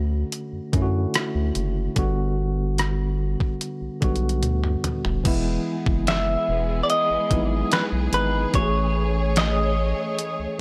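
A dry, gritty hardware recording with a faint mains hum carries this smooth, romantic contemporary R&B passage, cut from a longer piece and set at 73 BPM in 4/4 with a straight feel in E major. A tine electric piano, clean and heard through its built-in speakers, accompanies from the start over a round, deep analog bass whose dark, sustained tone blends square, sine and triangle waves with a wave-folded edge. A detuned 8-bit drum machine with a sampler-style character brings a thumpy kick, medium-tuned snare, rim click, hi-hat, toms and crash, overdriven and re-recorded in a small room, and a drum fill at 4.4 seconds leads into the second section. There, at 5.2 seconds, a warm studio string ensemble adds even, bowed sustained chords with vibrato and a sidechain pumping effect. At 6.1 seconds a bright, picked clean electric guitar, recorded direct and compressed, takes the melody through lush chorus and tape echo, while the harmony moves from Dmaj7 and Gmaj7 to Emaj7 and Amaj7.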